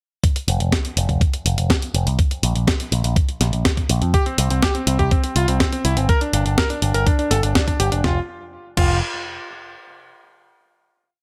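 A clear, clangy electric grand piano with long sustain and tape echo enters at 4.1 seconds with a repeating sixteenth-note riff over a pedal note, riding a bright, enveloped-filtered picked bass galloping in sixteenths and a thumpy four-on-the-floor kick with a sampler-style disco machine beat of hi-hat, snare and crash, in a short, playful and sunny italo disco piece that closes on a final chord at 8.0 seconds.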